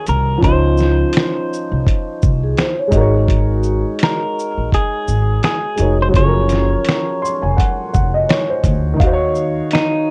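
A clean electric guitar melody and a dark upright piano open this hazy, nostalgic lo-fi hip hop excerpt together, drifting at 84 BPM in 4/4 with a swung sixteenth-note feel. The fingered, compressed guitar sits softened by a low-pass filter, tape echo and plate reverb, while the mellow, woody piano carries a vintage cassette tone up front and plays a fill from 6.9 to 9.0 seconds. A growly pizzicato upright bass with steel strings and transformer saturation anchors the low end beside a gritty sampler-style kit of thumpy kick, fat snare, hi-hat, shaker and finger snaps, re-recorded in a small room. Briefly, from 2.4 to 4.2 seconds, a vibraphone with soft mallets adds a ringing, metallic second line with slow motor vibrato, band-limited and touched with tape echo. The harmony moves through Dbmaj7, Ab7sus4, Gbmaj7 and Ebm7, and the whole mix wears light reverb and worn, warbling old-tape pitch drift.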